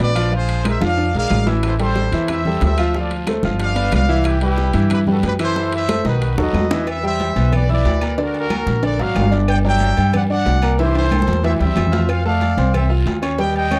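A thumpy, dark upright bass sits up front in this passionate, danceable salsa excerpt, beneath a bright, vibrato-laden trumpet section carrying the melody and a brilliant, long-sustaining grand piano comping through jazzy changes, while ringing timbales and agogo bells, thin-skinned congas, woody claves entering at 0.2 seconds, raspy guiro, and very quiet round bongos and cowbell arriving at 1.6 seconds fill out the background of a dry, close 1970s-style studio sound punctuated by drum fills.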